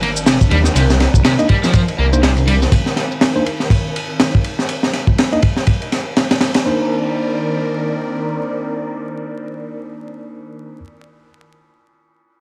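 A light reverb and a layer of vinyl crackle frame this raw, funky breakbeat excerpt, which swings its sixteenths in 4/4 over a Cm9 chord. Up front, a punchy acoustic breakbeat kit with a high-tuned snare, dark ride cymbal, kick and a saturated, rolled-off top plays through the first 6.7 seconds under a filter sweep, with a layered electronic shaker sitting in the background. A crunchy overdriven guitar picks a short riff with delay at the start while a sub drop hits beneath, and a thick, detuned saw bass with tube saturation sits menacingly up front until about 2.7 seconds. A swirling phased analog pad sustains chords throughout, its bright, chorused tone carrying 12-bit sampler grit and sidechain pumping, and a filter sweep moves across it during the opening section. From 1.4 seconds a mellow tine electric piano adds clean, low-pass filtered stabs with delay, and once the drums stop, the pad and piano carry the closing passage together.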